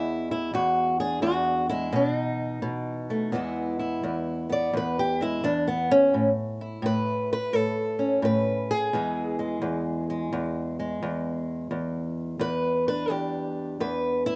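A dark production with a moderate booth ambience frames this laid-back, rollicking acoustic country blues fragment, cut from a longer piece and set at 86 BPM in 4/4 with a swung eighth-note feel in E mixolydian. A boxy, up-front, fingerpicked old ladder-braced acoustic guitar carries everything alone, ranging from E2 to D5 as it moves through E7 and B7 before taking a solo from 3.3 seconds over E, A and E7 until 14.4 seconds.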